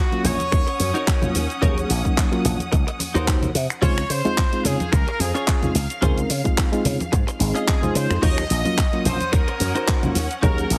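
A punchy, up-front electronic kick drives this sensual, cosmic nu-disco cut from a longer piece, while a growly slap bass with an envelope filter enters at 0.2 s. A house kit of crash, hi-hat, handclaps, finger snaps and shaker sits alongside the layered, produced kick, and low-tuned congas with a thin skin sit back in the mix. A reed electric piano carries the accompaniment with a fast tremolo, worn and slightly out-of-tune through its built-in speakers, coloured by 12-bit sampler grit, tape echo and sidechain pumping. A twangy, picked clean electric guitar plays a riff bathed in lush chorus from 0.5 s, and a bright pop-style trumpet section states the melody through tape echo. Distant, focused bowed strings hold sustained chords with vibrato and sidechain pumping over a swung groove that moves from Ebm7 to Dbmaj7 and back, all under a heavily compressed, radio-like sound with light reverb.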